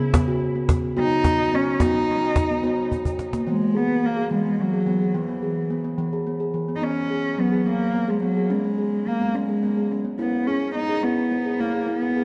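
Meditative world music in a dreamy, gentle 6/8, where a round, ringing steel tongue drum struck with firm rubber mallets spins delayed arpeggios throughout, a snappy cajon played with soft hands adds a brief opening pulse and a drum fill ending at 3.5 seconds, and a dark, bowed cello, played sul tasto with vibrato and a soft attack, carries an intimate delayed melody from 1.0 seconds, all set in a wet recital-hall reverb with a mellow top end.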